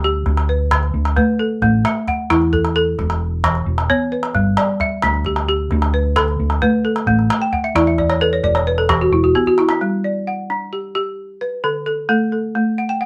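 Joyful and flowing, this short cut from a longer West African traditional piece moves at 88 BPM in a straight 12/8 in G lydian, with a woody, dry balafon struck with hard rubber mallets playing up-front arpeggios throughout and adding fills from 7.4 to 9.8 seconds, a dark, amped hollow-body short-scale electric bass holding a round low line until 9.3 seconds, and a small, band-limited vintage calabash keeping percussion through 9.8 seconds, where a drum fill hands over to a closing balafon-led passage, all heard as a band playing live in a small room with moderate reverb.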